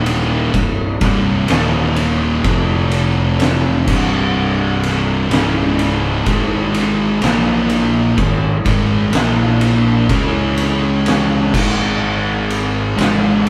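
Stoner and doom metal at a crawling 63 BPM in 4/4, brooding and ominous, this short excerpt cut from a longer piece sets three fuzz-soaked picked guitars grinding out a heavy riff (one warm, one dark and very quiet, one bright and double-tracked, with the warm and bright ones sitting in the background) over a growly, punchy fingered bass and an up-front, oversized low-tuned drum kit with a fat snare, boomy kick, crash and ride, all captured live in one stone room with moderate reverb and a faint mains hum.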